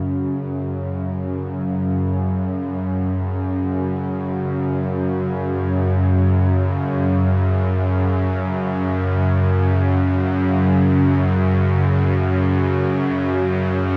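A tense, string-like bowed drone sits up front from the first moment of this ominous, desolate dark ambient excerpt in free time, while a deep, warbling pad holds sustained chords through chorus in the background and a very quiet bronze singing bowl, played with a felt mallet, rings with slow metallic beating for the full 14 seconds, the whole recording steeped in a wet cathedral reverb.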